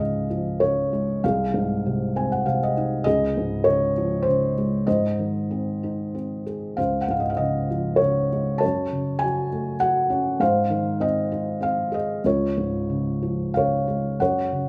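In an unhurried three-beat metre that bends and breathes with rubato, this brief classical fragment from a longer work unfolds as a lyrical piano solo. The only instrument is a felt-muted upright piano, placed up front so it sounds intimate and close, with its mechanical action noise clearly audible. Its tone is mellow and dark, smooth and thick with felt, giving the playing a vintage character that spans the low bass up into the upper middle register. A small fill flickers through between 1.8 and 3.1 seconds before the harmony settles back and moves on through gentle major and seventh-chord colours. A moderate recital-hall reverb surrounds the instrument, lending the sunny, warm mood a soft sense of space across its roughly 14.7 seconds.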